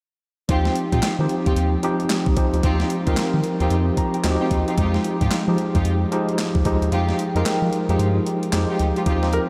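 Electric piano, strings, bass and drums enter together at 0.5 seconds in this upbeat, flirty new jack swing cut, a short slice of a longer R&B piece at 112 BPM in Eb major with a swung sixteenth-note feel. A mellow, worn tine electric piano carries the accompaniment up front, lightly overdriven and slightly out of tune as if heard through its built-in speakers, moving from Eb69 to Fm9 and playing a fill around 3.7 seconds. Beneath it, a round, deep analog bass with a dark, sustained tone and a filter sweep anchors the low end, while a lush, woody string section with vibrato adds delayed stabs. The crisp 8-bit drum machine brings a thumpy kick, medium-tuned snare, hi-hat and handclaps with an overdriven, small-room grit, and the kick drops out from 6.9 to 9.1 seconds. A clear concert grand piano sounds a single Bb4 near the very end, and the whole mix is soaked in a dreamy cathedral reverb with a long 5.8-second tail.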